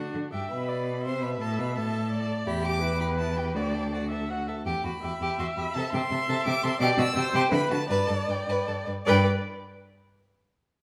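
This excerpt opens on all four bowed strings of a quartet at once, playing a quick classical-period movement in G major and 3/4 time, graceful and lively, moving at roughly 154 to 174 BPM with a rubato feel. The first violin carries the melody high in its range, its tone clear and smooth with vibrato, while the second violin adds a focused, vibrato-tinged second line beneath it. The viola fills in the accompaniment with a focused sound and a smooth top, and the cello supplies the bass with a rich, even voice that sits up front in the mix. The harmony moves from G through D, E minor and A minor colours before a brisk run of G, C and D chords closes the phrase back on G around 7.9 seconds. All four players continue until 9.3 seconds, and a stone room's reverb surrounds them with a wet, resonant halo, as this fragment of a longer piece passes from its opening section into a brief new one at 9.1 seconds.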